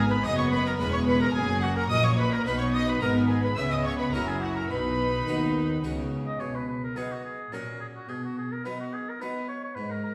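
In a straight 3/4 pulse at 107 BPM, this lively, festive baroque-style concerto movement in B major moves briskly through a passage taken from a longer piece with solo episodes, its chords turning from G#m through F# to B. An up-front oboe with a soft attack and light vibrato carries the melody alongside a first violin section with a smooth top and gut-string tone, while a second violin section sits in the background on a supporting line. A viola section adds reedy, period-style accompaniment, and an Italian-style harpsichord fills in a full, plucked accompaniment across its two sets of strings. Underneath, a distant, rich cello section and a close double bass section anchor the bass, with the double bass dropping out at 6.4 s as the music moves into a new section. The violins and violas stop at 9.6 s, leaving the oboe, harpsichord and cellos to close the passage in the wet reverb of a church or concert hall.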